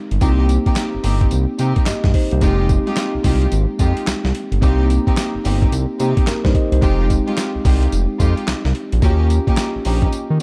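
A bell-like, bright tine electric piano opens this confident, slick excerpt of new jack swing R&B in F minor at 109 BPM, swung on the sixteenths, joined almost at once by a smooth sawtooth-and-square synth bass with ring modulation and a gritty, pitched-down sampler-style drum kit of thumpy kick, medium-tuned snare, hi-hat, handclaps and tambourine, both sitting up front. Lush bowed string stabs with vibrato enter at 0.2 seconds, the chords moving between Cm7 and Fm9 before landing on Eb7 at 9.0 seconds. The dark production keeps reverb to a minimum, with the compressed, tape-flavoured drums and the clean, direct keys setting a polished groove.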